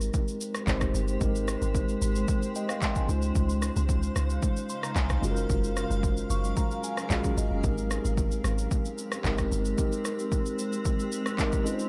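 A deep, round log drum bass with a dark, percussive bite sits up front in this soulful amapiano excerpt at 112 BPM in Ab major, dropping out at 9.7 seconds. A mellow, clean tine electric piano carries the Abmaj9, Dbmaj9 and Gbmaj9 chords and adds short fills, while a punchy, layered deep house kit of kick, handclaps, rim click and shaker drives the straight 4/4 groove. Underneath, a cloudy, blurred granular pad enters at 0.4 seconds, breathing with sidechain pumping and its own reverb in an otherwise dry, close mix.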